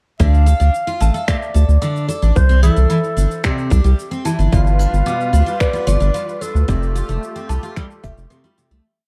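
The recording has a dark, intimate production with vinyl crackle and a small room ambience, giving this short folktronica piece an autumnal mood. A mellow clarinet carries the jazz-style melody in motif-based phrases, its subtone colored by light vibrato, scooped notes and tape echo. Behind it, a clanky, bell-like toy piano, slightly out of tune and also treated with tape echo, repeats a soft step sequence in the background. A bright, shimmering twelve-string acoustic guitar picks octave-doubled arpeggios in a 12-step loop that drifts against the bar, with tape echo of its own, while a round, deep analog bass sits up front with a syncopated riff. The beat comes from a tight, overdriven electronic kick and a clicking found-sound pattern of overdriven shaker and finger snaps. A reedy musette accordion enters at 4.5 seconds with sustained chords, and the piece fades out from 6.0 seconds.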